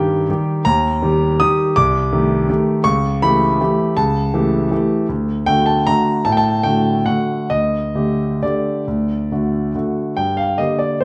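In a lilting waltz time with a flexible rubato, this nostalgic, elegant classical excerpt features a solo concert grand piano, intimate and up front with deep bass, a smooth vintage tone and audible action noise, spanning C2 to Eb6 in a moderately reverberant recital hall as its harmonies drift toward a resolution on G minor at 10.2 seconds.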